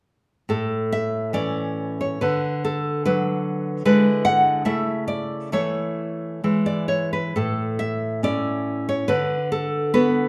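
Tender and warm, this brief passage from a longer romantic piece for solo classical guitar flows with a gentle rubato in 2/4, the fingerpicked nylon-string guitar sounding bright with fresh strings as it sits up front from 0.5 to 10.3 seconds, framed by a moderate recital hall reverb.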